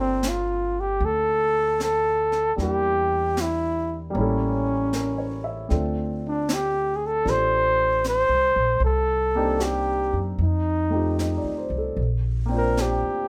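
Melancholic and smoky, this short jazz ballad excerpt sets a mellow flugelhorn up front with vibrato, soft attacks and scooped notes over a polished, present baby grand piano, a woody pizzicato upright bass and a small-room brush kit with a high-tuned snare that enters at 0.2 seconds, all in a dry, intimate sound with a gentle swing.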